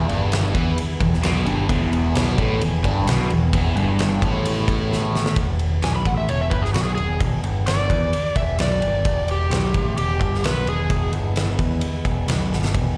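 A warm, overdriven slide guitar carries the melody from 5.8 to 11.1 seconds in this raunchy, swaggering blues rock and southern rock fragment, heard as a live gig through the venue's PA with small-room ambience and recital-hall reverb. Before it, a bright, double-tracked overdriven electric guitar riff with phaser and slapback echo runs until 5.4 seconds and is capped by a drum fill, while a growling, overdriven picked bass and a huge arena kit with fat snare, punchy kick and ride cymbal drive the straight 4/4 feel. Beneath them, a thick, gritty tonewheel organ holds very quiet sustained chords with key click and vibrato.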